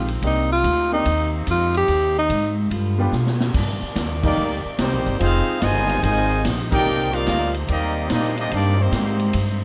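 Swung eighths in 4/4 drive this dramatic, sultry big band swing excerpt, where a close-miked tenor saxophone with scooped, vibrato-laden notes leads over an intimate grand piano, a tight saxophone section in the background, a woody pizzicato upright bass and a roomy, distant drum kit with dark cymbals, until a drum fill at 3.1 seconds gives way to a clear, present trumpet section and a soft-edged trombone section entering at 4.2 seconds with band accents, all in a dry mix.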